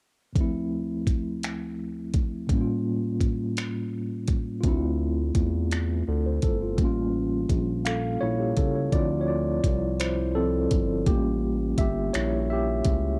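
A dry, close cassette home recording carries this yearning, late-night excerpt of slow six-eight R&B in D minor at 56 BPM, where a clean tine electric piano with medium tremolo and tape coloring, played through a combo amp, moves between Dm9 and A7b9b13 over an electronic kit of finger snaps, warm hats and a knocking kick, until a saturated, mellow sawtooth-and-square synth bass with vibrato enters at 4.6 seconds and the electric piano steps forward for a solo from 8.9 seconds.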